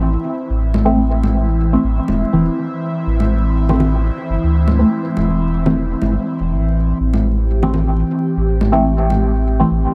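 A round, deep sub bass sits up front through this meditative dub techno excerpt, its sine tone thickened with tube saturation. Above it, an airy, breathy pad holds sustained chords on one unchanging harmony, its detuned layers and noise texture colored by chorus and phaser. Electronic congas enter at 0.7 s, overdriven, re-recorded in a large room and carried on dub echo, over the track's gentle sixteenth-note swing. From 0.9 s a dark, mellow chord stab with a wave-folded edge joins, treated with chorus, phaser, cassette tape color and dub echo. Light reverb and a layer of vinyl crackle frame the hypnotic groove.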